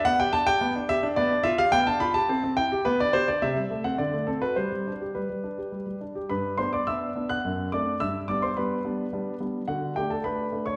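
In a lilting triple metre with a straight, even feel, this cheerful classical-period sonatina moves at a moderate, steady pace. A single concert grand piano carries the whole piece, intimate and up front, its deep bass and long sustain ringing through a polished tone where the click of the action can be heard. The opening phrase passes through G7/B, C, Am7/C and D7 before settling on G, and a second, playful phrase begins at 6.3 s, turning through D7/F# and back to G before arriving on D at 9.7 s. The piano covers a broad span from low to high register, giving the brief passage a full, singing presence. A recital-hall reverb with a 1.6-second tail surrounds the instrument, lending the sound the spacious glow of a church or concert hall. The recording is cut from a longer piece and lasts just under 11 seconds.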